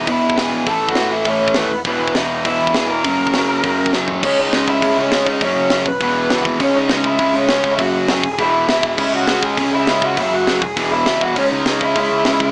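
Punk rock at a racing 202 BPM in straight 4/4, this upbeat, energetic passage is cut from a longer piece and tuned slightly flat of standard pitch. A raw garage guitar drives the riff from the start, bright, double-tracked and up front with overdrive, while a lead guitar through a small cranked amp carries the melody over it with a lo-fi, overdriven tone and slapback echo. Underneath, a growly, punchy overdriven picked bass sits in the background, and a tight metal drum kit enters at 0.1 seconds with a high-tuned snare, tight kick, crash, hi-hat and toms, its top rolled off and its body mid-forward. A drum fill at 3.9 seconds launches the second section at 4.2 seconds, where the harmony moves from E, A and F# to a repeating cycle through C#m, F#5 and E. The whole mix has light small-room reverb and the sound of a small speaker.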